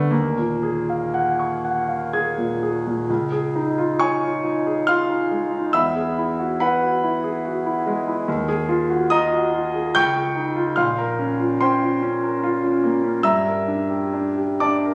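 A clear, up-front concert grand piano with deep bass and long natural sustain plays alone in this dreamy, hazy impressionist classical fragment in a rubato 3/4, ranging from Bb1 to Ab6 through colored chords such as Ebm11, Dbadd9, Eadd9 and a closing Gm6, with a brief opening section giving way at 3.1 seconds to a longer second one, all heard in a moderate recital-hall reverb that sounds captured on a phone in the room.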